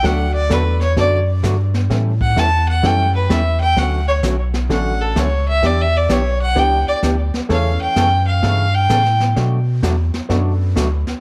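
A swung 4/4 groove at 129 BPM drives this playful western swing excerpt in D major, where a biting, earthy fiddle with light vibrato and tape echo carries the melody until 9.2 s over a dark, clean, compressed hollow-body electric guitar, a woody, slightly detuned upright piano in the background, a deep, full sub bass up front, and an acoustic brush kit with a high-tuned snare and boomy kick, all moving through D, A7, Dmaj7, Em7, A and Bm7 in a small room with moderate spring reverb.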